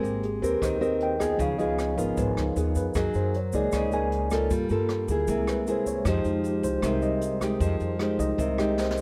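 A mellow, clean tine electric piano takes the solo from the start of this smooth, wistful bossa nova excerpt in F minor at 154 BPM, moving over chords such as Abmaj9, Db7, Gb69 and Fm9. Beneath it, an up-front nylon-string guitar plucked with the thumb and a woody, thumpy pizzicato upright bass carry the accompaniment, while a jazz kit played with brushes (punchy kick, medium-tuned snare, rim click and hi-hat) and a faint, grainy egg shaker keep time. The sound is dry, with little reverb, and a drum fill arrives at 8.8 seconds just before the cut.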